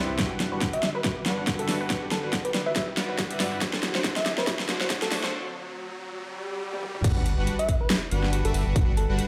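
Future bass in a half-time feel with a light swing, bright and euphoric, this short cut builds over its first 7.0 seconds before dropping into a fuller section. A very quiet, airy and breathy pad holds sustained chords beneath a soft, mellow supersaw riff that carries delay and sidechain pumping, while a filter sweep on the supersaw runs through the build-up. A thick, saturated sub bass pumps along underneath, and a lush, warbling unison pluck sits in the background with delayed arpeggios until 5.3 seconds, when a brief break arrives. A round, keys-like synth lead with chorus, vibrato and digital delay carries the melody over Gmaj7 and D7/F# harmony, and faint risers, a swell and a sub drop mark the transition into the drop at 7.0 seconds. Up front, a big-room drum kit with a huge snare, metallic hats and tom fills plays alongside a punchy layered electronic kick, all set in a large studio reverb that gives the mix a roomy character.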